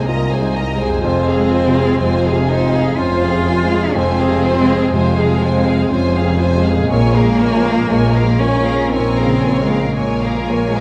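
A solo cello carries the expressive, bowed melody from the start, its vibrato and portamento set over a soft, intimate felt-muted upright piano, while a violin section sings a high line above and a second, more distant violin section holds a smooth inner part. A viola section sits in the background and a very quiet concert harp rings out arpeggios, and from 0.1 s dark cello and lush double bass sections anchor the bass as the harmony moves from Abadd9/C to Fm and then to Bbm7 at 6.9 s. This uplifting, moving cinematic film cue unfolds in an unhurried, rubato triple metre, bathed in the wet reverb of a scoring stage.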